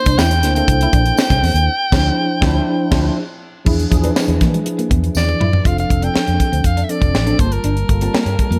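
Bittersweet and slick, this short cut of polished 1980s jazz-funk pop moves at 121 BPM in a straight 4/4, with a bright, forceful soprano saxophone carrying the melody in a smooth pop style with vibrato over a mellow tine electric piano treated with ensemble chorus. A dry, up-front funk drum kit with bright cymbals, a high-tuned snare and gated reverb plays alongside a dark, round, foam-muted fingered bass, while a clean picked electric guitar riff with subtle chorus and a jingly tambourine sit in the background. The chords shift from C9 through a band accent at 1.7 seconds, then a drum fill at 5.2 seconds leads into F6 and Gm9, all within a small room ambience.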